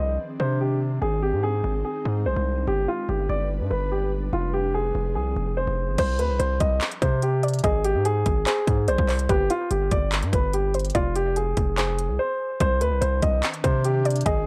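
A half-time 145 BPM trap groove in C harmonic minor drives this dark, melancholic hip hop piece, where a mellow, vintage baby grand piano melody, softened by a low-pass filter and analog delay, sits up front over a heavy, saturated 808-style bass, an ethereal detuned pad hovers in the background until 6.0 s and returns near the close, and at 6.0 s a trap drum kit with a hard-clipped kick, crisp hats, handclaps and crash cymbal arrives alongside a soft, round pluck line with chorus and delay, the dry, gritty recording broken by a brief silent gap at 12.2 s.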